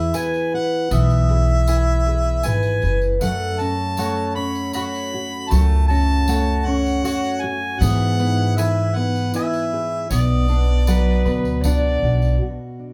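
In a straight three-four lilt, this reflective, haunting acoustic folk fragment carries a distant, lightly vibratoed harmonica melody over up-front fingerpicked steel-string guitar with audible finger squeak, a woody pizzicato upright bass, round double-string mandolin arpeggios with a slapback echo and a jingly tambourine in the background, before an earthy bowed fiddle slips in with a second line at 10.9 s, the recording heard from further back in a small, reverberant room.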